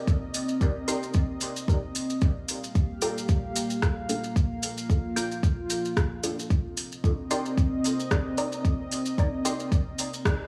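A steady 4/4 pulse at 112 BPM with a light 16th-note swing drives this hazy, meditative dub techno excerpt, anchored by a deep, layered electronic kick sitting up front. A soft vintage rhythm box adds metallic hi-hats and rim clicks with a tape-warm analog character, while close, grainy maracas sit low in the mix. Beneath them, a dark analog pad holds sustained chords with a slow attack and long release, its detuned sawtooth and sub-octave body thickened by chorus and breathing with sidechain pumping. From 0.9 seconds, two muted, filtered dub chord stabs enter. One carries a higher, evolving riff with a moving notch, and the other punctuates with short, plucky stabs. Both are soaked in phaser, dub echo and sidechain pumping. The harmony moves from Cm7 to Gm7 and back to Cm7 inside a small, lightly reverberant digital room, and the band hits a brief accent at 10.3 seconds just before the cut.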